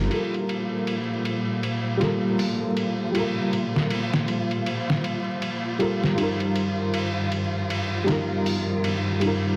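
Melancholic and hypnotic, this short trip hop excerpt moves at 79 BPM in G minor with a 16th-note swing, opening on Gm9 and shifting to Ebsus2/G at 6.2 seconds. A felt-muted upright piano plays soft, dark accompaniment with tremolo, gritty vintage sampler texture and tape echo, while an up-front chamber string section holds rich, bowed, vibrato-laden chords under a filter sweep. A pitched-down, compressed sampler-style drum kit of hi-hat, ride and a clipped, medium-tuned snare sits up front in a small room, all within an echo-chamber reverb, vinyl crackle and a dense, heavily limited master.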